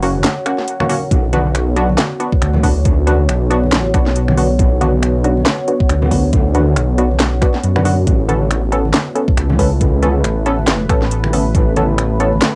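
Deep dubstep at 138 BPM in B minor, this brief cut from a longer piece moves with a swung, half-time feel that is meditative and dark. A moody sawtooth pad with a sub octave sits in the background on slow-attack sustained chords, thickened by chorus, its built-in reverb and a cassette-tape haze. Up front, a rumbling detuned saw bass beats against itself with saturated weight, while muted, filter-plucked dub chord stabs carry chorus and dub echo. The garage kit brings a cracking snare, metallic hats, finger snaps and handclaps, and ringing acoustic congas with soft hands echo from a distant large room. A knocking electronic kick enters at 1.1 seconds and drops out at 11.6 seconds, as the harmony moves from F# to Bm and then to Aadd9 at 8.1 seconds, all captured as a home cassette recording in a moderate booth ambience.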